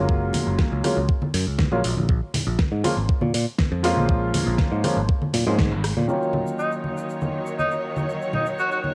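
Groovy and sleek, this nu-disco excerpt moves at 120 BPM in a straight 4/4, cut from a longer piece and captured as a home recording on cassette with light reverb and small room ambience. A dark, mellow baby grand piano carries the accompaniment up front through the whole clip, its long sustain pumping against the sidechain and softened by a low-pass filter, tape colour and analog delay, moving from F#maj7 to A#m7. Beneath it, a growly picked electric bass and a thumpy, overdriven electronic kick sit up front, joined by a layered pop drum kit with a fat snare, metallic hats, rim clicks and crash cymbal, plus soft-handed congas and egg shaker. The band hits an accent at 5.6 seconds, and around 6.1 seconds the bass and kit drop away as a smooth, bowed string section enters with vibrato-rich sustained chords over D#m7. A raspy, gritty tenor saxophone then takes a short solo melody up front from 6.6 seconds, its vintage tone trailed by analog delay.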